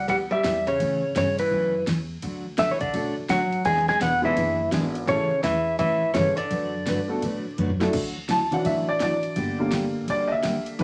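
A clean, compressed lap steel guitar carries the melody up front, its slide lines and volume swells giving this cheerful, playful western swing excerpt a sunny country lilt over a swung groove. Beneath it, a dark, hollow-body archtop guitar picks a second line, while a full-bodied jumbo acoustic guitar adds picked accompaniment. A woody, thumpy upright bass on gut strings plays pizzicato under an electronic deep house drum kit with a deep kick, fat snare and metallic hats. A clear, slightly detuned upright piano with long sustain joins at 2.9 s. The steel and archtop drop out at 7.6 s for a drum fill, after which the piano takes the solo from 7.9 s. Studio reverb and a layer of vinyl crackle give the whole mix a vintage patina.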